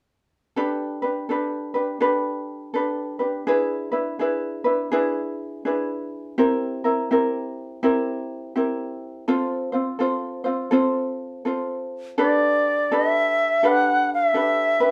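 A mellow, fingerpicked acoustic ukulele opens this dreamy, sunny Hawaiian excerpt at 0.6 seconds with a lightly swung 4/4 accompaniment through chords such as Gadd9, E7, C7 and F, until a pure, reedy bamboo bansuri with gentle vibrato and a soft attack steps up front with the melody at 12.2 seconds, all carried by a live band feel in one room with a wet studio reverb.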